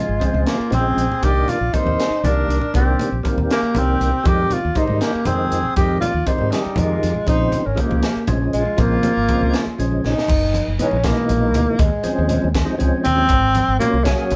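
This nocturnal, slick electric jazz fusion excerpt opens at 0.0 s with a breathy, whispered tenor saxophone carrying the melody up front, alongside an airy, reedy metal flute on a second line and a fat, lightly overdriven tonewheel organ with key click, third-harmonic percussion, chorus vibrato and a slow rotary speaker. A round, dark fretless bass and a crisp acoustic drum kit with bright cymbals, a high-tuned snare and a punchy kick join almost at once, while ringing, medium-tuned congas sit in the background. The pulse is an unhurried 80 BPM in 6/8 with a straight feel, in Bb dorian. The saxophone's subtone, scooped notes and vibrato give it an intimate jazz solo voice, and the drums play short fills around 4 s and just before 10.3 s. The harmony moves through Bbm9, Cm9 and Fm9 before the flute drops out at 9.8 s, and at 10.3 s the band shifts to a new section built on Gb13sus4, Eb13sus4 and Ab13sus4. 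It sounds like a band playing live together in one room with moderate studio ambience, and the kit carries a pumping small-room character.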